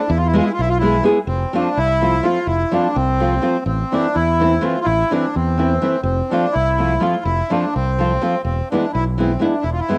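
A reedy accordion sits up front and carries the melody in a narrow middle range, its slow beating and cassette-tape coloring giving this fiery yet bittersweet Balkan wedding-band excerpt a homespun edge. It moves in a straight 5/8 at 252 eighth-note beats per minute, with a short opening giving way at 1.3 s to a longer passage that runs to the end. Beneath it, a fingerpicked nylon-string guitar supplies accompaniment with fresh strings, a deep classical tone and audible finger squeak, and it shares the accordion's tape coloring. A fingered electric bass, direct and warm, anchors the low end from 0.1 s, all three parts sitting close and forward. The harmony travels from E through F and A minor, back to F and home to E, while moderate spring reverb and a home-cassette studio ambience wrap the trio in an intimate, lived-in sound.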